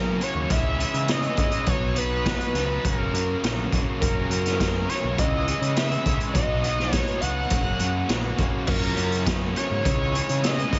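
Indie rock at 103 BPM in 4/4, wistful and jangly, this brief cut from a longer piece cycles through F#, C#madd9 and B over the full 10.8 seconds. A screaming, wave-folded synth lead with distortion and digital delay carries the melody, while two bright, picked guitars, one through a cranked stack with tremolo and a hollow-body with subtle chorus, sit in the background playing riffs. A growling overdriven bass, a very quiet flute-like tonewheel organ holding soft chords through a slow rotary speaker, and a raw, boomy garage kit, gritty and saturated in a small room with a rolled-off top, that comes in up front at 0.2 seconds round out the sound.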